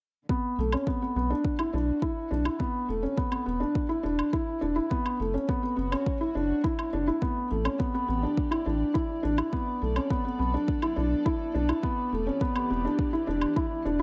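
A straight 4/4 pulse from an overdriven, deep electronic kick and a layered, overdriven woodblock drives this melancholic, hypnotic piano and strings electronica fragment, where a felt-muted upright piano with audible action noise repeats an intimate riff through digital delay up front, a round, nasal analog bass pumps under sidechain from 0.6 seconds, and a bowed string section played sul tasto fades in behind with soft, floating sustained chords that also pump, within a moderate echo-chamber reverb.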